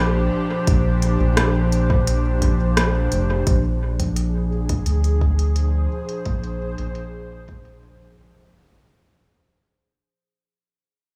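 A straight 4/4 pulse at 86 BPM carries this spacious, hazy ambient dub piece in Bb mixolydian: a soft, overdriven electronic kick and a smooth-hatted electronic kit with rim clicks, low-pass filtering and dub echo enter at 0.7 seconds beneath an airy, breathy, detuned pad with chorus holding Bb and then Bb7 chords, and a round, deep, tube-saturated analog bass, set in a light small-room reverb as the music fades out from 3.5 seconds.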